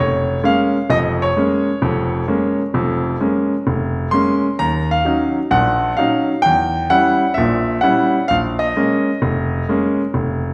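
A clear, up-front grand piano plays alone in this short cut from a longer solo jazz piece, swinging at 130 BPM in 4/4 with a cool mood in Bb minor. Across its 10.5 seconds, spanning F1 to C6, the harmony moves from Bbm7 to Ebm7, through Edim7 at 6.4 seconds, and back to Bbm7. The natural tone sits in a recital hall with a wet reverb, giving a sense of a church or concert space.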